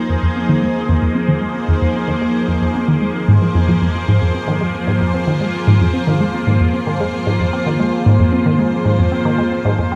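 In a straight 4/4 pulse, this ambient, sequencer-driven space music excerpt feels expansive and hypnotic, built on a single minor chord. An up-front, squelchy, resonant blip pluck plays a riff through phaser and delay under a filter sweep, while a bright, morphing wavetable pad holds sustained chords with ensemble chorus, phaser and its own reverb. A bubbling stepped-filter texture fades in from the background, and the whole is steeped in a huge, lingering ambient reverb.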